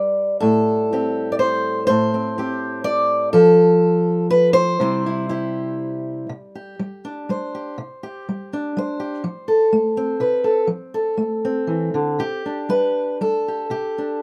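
A light reverb surrounds a single fingerpicked steel-string acoustic guitar, placed up front with a warm, concert-ready tone. This short folk passage, cut from a longer piece, moves in 3/4 at around 122 BPM, though the rubato feel lets the time breathe freely. Set in C major, the guitar ranges from A2 up to D5, opening on Am7 before moving through F and C. At 6.3 seconds the harmony turns to Csus2 and F, and at 12.2 seconds it settles back onto Csus2 for the brief closing phrase. The mood is warm and peaceful, carried entirely by the one instrument across its 14.2 seconds.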